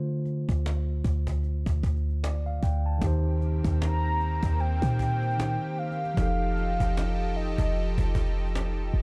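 Sensual and late-night, this contemporary R&B excerpt moves at 76 BPM in a swung 4/4, opening with a mellow tine electric piano over a deep, boomy 808-style bass sitting up front, with a snappy, saturated cajon entering at 0.3 seconds. At 3.0 seconds the harmony moves from Dm7 to Eb6 as a lush, detuned unison pad with chorus arrives, followed at 3.8 seconds by a horn-like, warbling synth lead with vibrato and chorus carrying the melody, before the chords settle on F9. The production is dark and warm, wrapped in digital ambience.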